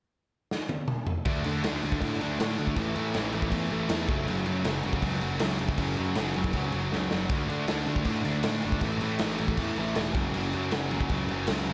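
Rowdy and energetic, this punk rock cut from a longer piece charges along at 159 BPM in a straight 4/4. A raw garage drum kit opens with a fill at 0.5 seconds, its crash, kick, snare and toms sounding dark and smooth with a tight kick, a medium-tuned snare and a rolled-off top, placed up front in a bright stone room. At 1.3 seconds the rest of the band crashes in: a sludgy, overdriven guitar sits up front with a dark edge, while a second, tighter distorted guitar adds a bright, picked layer further back, both riffing from F#2 to D4. Underneath, a picked electric bass growls with fuzz and overdrive, recorded direct and amped. The chords cycle through D5, A5 and F#5 twice, with another drum fill at 6.9 seconds marking the turn, and the whole thing sounds dry, with little reverb.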